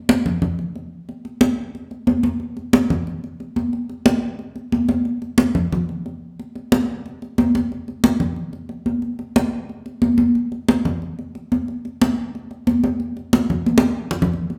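High-tuned congas ring out from the very start of this joyful, danceable Latin clip. They sit close and dry up front, struck with hard hands, while a large studio room adds a wet wash of reverb around the live, one-room performance. The groove moves into a new section at 3.7 seconds and reaches a drum fill at 13.7 seconds before the clip cuts off.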